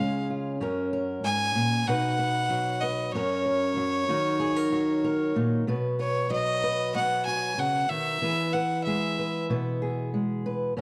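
A clear, nasal fiddle with an airy bow and a touch of digital delay carries the melody up front from the start, over a fingerpicked steel-string acoustic guitar, in this nostalgic, warm folk piece at 94 BPM in 4/4, moving through chords such as F#, B and D#m in a dark production with moderate large-studio reverb, the fiddle dropping out at 9.4 seconds while the guitar continues alone to 10.8 seconds.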